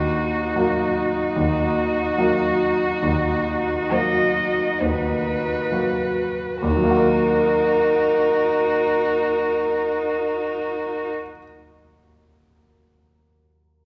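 Classical music in a slow, romantic vein for piano quartet, this yearning, melancholic passage in E-flat minor moves at roughly 32-38 BPM in 4/4 with a rubato feel, easing into a slowdown over its first 6.6 seconds before a new section begins. Two muted violins and a muted cello, each a single bowed player con sordino, share a dark, veiled sound, with the first violin carrying the melody between Gb4 and Bb4 with vibrato and portamento. The second violin, placed close, adds a vibrato-touched line reaching up to Eb5, while the distant cello holds Eb4 with light vibrato, soft attacks and gliding portamento. Beneath them, a clear, natural baby grand piano sits up front with short sustain, spanning Eb2 to Bb4 in its accompaniment and sounding on alone after the strings stop at 11.1 seconds until 13.8 seconds. A wet recital-hall reverb with a small-room ambience surrounds the ensemble, and the passage is cut from a longer piece.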